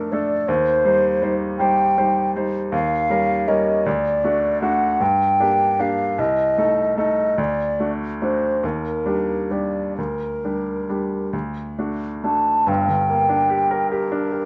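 In a rubato 6/8, this yearning, melancholic romantic classical duo pairs a hollow, mellow concert flute, singing the melody with vibrato and a crisp attack, against a clear, polished grand piano accompaniment that sits up front. The harmony drifts through darkened chords such as Eb7 and Ebmaj7 that keep returning to D before settling on Gm as a new section begins at 12.7 seconds. Light reverb surrounds this brief passage, cut from a longer piece.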